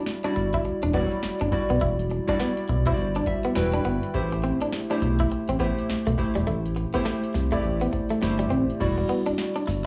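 Warm, detuned analog keys with chorus and plate reverb open this slick, punchy R&B new jack swing excerpt alongside a bright, compressed clean electric guitar riff, joined almost at once by a booming drum machine with a deep kick, crisp snare and metallic hats and by a round, dark bass up front, with the keys adding a fill from 3.0 to 4.1 seconds as the swung groove moves between Em9 and Am7 in a small-room home recording on cassette tape.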